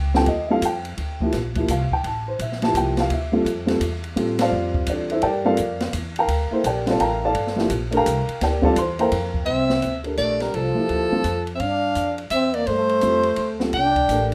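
A swung 3/4 pulse at 170 BPM carries this cool, hypnotic modal jazz excerpt, with an open drum kit of dark cymbals and a boomy kick joining a growly pizzicato upright bass and a mellow, boxy upright piano that comps up front over Dm9 and Gm9 in D minor. At 9.4 s a close-miked trombone with a plunger mute adds a clear, wah-wah second line with light vibrato, and at 9.5 s a soprano saxophone takes the melody with subtone, vibrato and scooped notes as the harmony moves to G dorian over G13sus4. The rough home demo mix sits in a wet studio reverb.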